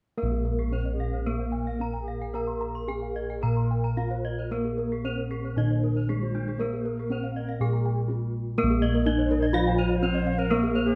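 Ceremonial and shimmering, this Balinese gamelan passage in Bb slendro moves at a straight 111-124 BPM in 4/4, with a change of section at 8.6 s. A bronze metallophone carries the melody over a lower metallophone accompaniment, while two more metallophones spin bright arpeggios struck with horn mallets, one of them airy, its paired tuning producing shimmering beats. Dark, round bossed gongs sit up front as the bass, and from 0.9 s a hollow concert flute adds a pure second line with vibrato, all in light reverb captured by close, detailed microphones.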